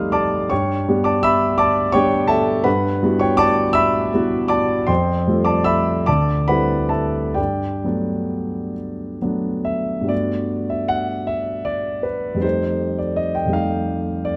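Serene and hazy, this short stretch of impressionist solo piano drifts in a rubato 6/8, its dotted-quarter pulse wandering between 42 and 57 BPM. A single concert grand carries everything, reaching from D2 up to F6, with an intimate, vintage character, deep bass and the noise of its action audible up close. The harmony floats through colourful extended chords, opening on F9 and moving through G6, Emadd9/G, Fadd9 and D9sus4 before settling on Gmaj9, then returning to F9 at 12.4 seconds. A second section begins at 10.1 seconds and carries the passage to its cut-off at 14.4 seconds, as the recording is taken from a longer piece. Close, detailed microphones keep the piano smooth and up front, while a moderate concert hall reverb with a 1.8-second decay gives it a gentle halo of space.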